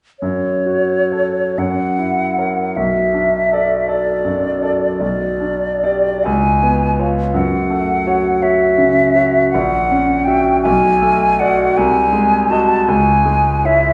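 From 0.2 s a hollow, airy concert flute with vibrato and a crisp attack carries a melancholic, elegiac melody up front, over a bright grand piano whose brilliant tone, deep bass and long sustain shape the accompaniment, in a romantic classical excerpt in F# minor and 6/8 at a slow, rubato 42-56 BPM that moves through F#m, Bm7 and C#7 before closing on C#m, heard from further back in a wet recital hall.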